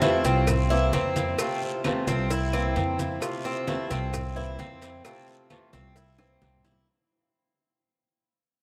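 Relaxed and easygoing, this brief fragment of a longer piece sits in Cuban son and guajira, moving in a straight four over a gentle sway between C7 and Fmaj7. Up front, a dark, boxy fingerpicked acoustic guitar plays swing-style accompaniment while a Cuban tres adds metallic, double-strung arpeggios, some strings doubled at the octave. A thumpy upright bass with gut strings and a woody pizzicato tone anchors the low end. Behind them, thick-skinned, low-tuned congas with a vintage, band-limited color, a raspy, saturated guiro and grainy, mellow maracas fill in the groove. Very quiet close, dry touches come from round cowbell and bongos and woody claves, which enter at 0.5 seconds. The whole fragment fades out inside a vast, echoing cathedral-like space, and a drum fill closes it from 6.2 seconds.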